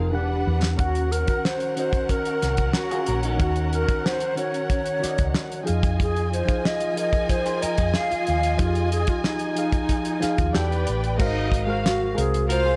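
Bathed in light studio reverb, this bittersweet, smooth 1970s-style soul excerpt in Eb dorian at 92 BPM opens on a drum fill from a damped, dry kit with a fat snare, tight kick and dark cymbals, as a round, hollow-body fingered bass sits up front beneath a reedy, slightly out-of-tune electric piano with phaser, while a breathy, mellow flute with vibrato carries the melody over a string section's expressive, portamento-laden second line, and a slightly broken-up guitar riff enters in the background at 2.9 s as the chords move from Ebm7 to Fm7 before turning to Ab13 at 11.2 s.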